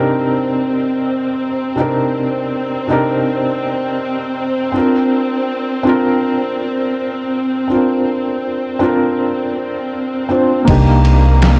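A dark, melancholic trip hop fragment in C minor at 81 BPM with a swung sixteenth feel opens on a soft, felt-muted upright piano, intimate with audible action noise and treated with tremolo and tape echo, over lush bowed strings holding sustained chords that move from Cm7 to Bbadd9/C. At 10.7 seconds, a woody, pizzicato upright bass with tube saturation arrives alongside a muffled, pitched-down sampler-style drum kit of thumpy kick, snare and ride, overdriven and compressed, all within a gritty hardware recording touched with studio reverb.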